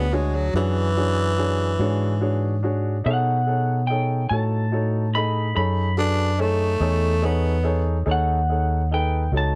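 A growling tenor saxophone sits up front with a raspy, gritty jazz voice, carrying a second line in its low-to-middle register before dropping out at 7.9 seconds. Above it, an electric guitar through a small old amp plays the melody with a slightly broken-up, lo-fi, compressed picked tone, while a warm baby grand piano fills in the accompaniment; all three are bathed in plate reverb. A fingered electric bass anchors the bottom with a round, amped sound placed close to the listener. This slow blues moves at 48 BPM in a straight 12/8 feel, with the harmony shifting from E13 to B13 at 3.1 seconds. The mood is gritty and soulful, and the short passage is cut from a longer piece, set in a light overall reverb.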